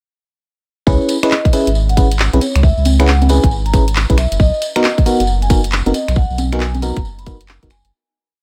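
A skipping, swung two-step groove drives this short, soulful, late-night UK garage piece, with a tight, up-front electronic kick landing in the broken two-step pattern from 0.9 seconds. A layered garage kit joins at 1.1 seconds with swung hi-hats, finger snaps, handclaps and high congas, while a jingly, vintage-sounding tambourine plays hand-played sixteenths quietly underneath. A deep, thick, saturated sub bass carries a syncopated line up front, and a glassy, bell-like FM electric piano punches out closely voiced chord stabs through chorus and dub echo. Above them, a metallic, ringing vibraphone played with medium mallets repeats a riff melody through tape echo as the harmony moves from C#m7 to Bmaj7. The mix is dry and close, and the whole groove fades out from 5.6 seconds.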